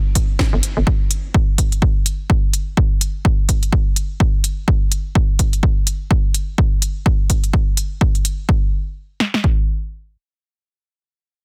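Minimal techno at 126 BPM in 4/4, with a 16th-note swing of 58% giving this cool, sparse excerpt a slight lilt. A house drum kit sits up front from 0.2 s, its punchy kick and snare carrying a tape-warm tone. Layered over it, a techno drum kit adds smooth hi-hats and a cracking, overdriven snare until 8.4 s. A hollow, bouncy FM bass knocks briefly around G1 with a fast attack and quick decay, pumped by sidechain compression. The sound is dense and heavily limited in a digital ambience, and after 8.5 s the piece moves into a new section carried by the house kit alone until 9.6 s.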